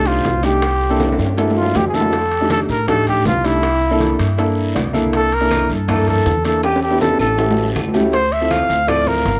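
This is a short cut from a longer Afro-Cuban jazz piece, moving at a brisk 160 BPM in a straight 4/4, with a sunny, danceable mood and a home-recorded cassette feel under light reverb. Low-tuned congas with a thick skin and ringing metal-shell timbales sit distant in the background, joined by very quiet, tight bongos played with soft hands, grainy maracas close and dry, and a raspy guiro, while woody claves slip in at 5.5 seconds. An upright bass plucks thumpy gut-string lines underneath, and a clear grand piano comps in C mixolydian with its action noise audible, adding a brief fill at 4.6 seconds. Up front, a breathy trumpet carries the solo melody with a soft attack, vibrato and a whispered, intimate tone, colored by tape echo. The harmony moves from F13 and C13 into Em7, A7 and Dm7 near the end, with two drum fills along the way.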